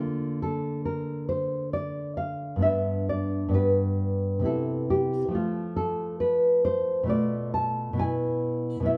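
A dark, full-bodied nylon-string guitar sits up front in this wistful, melancholic romantic piece for solo classical guitar, its thumb-plucked notes ranging from G2 to A5 with audible finger squeak. Moving at a rubato 68 BPM in 3/4 and tuned to A4 = 436 Hz, the 9-second fragment of a longer work drifts through Bb/D, G, Cmaj7 and F before settling on Bm7b5 and E/B. The performance, captured live, carries a moderate, large studio reverb.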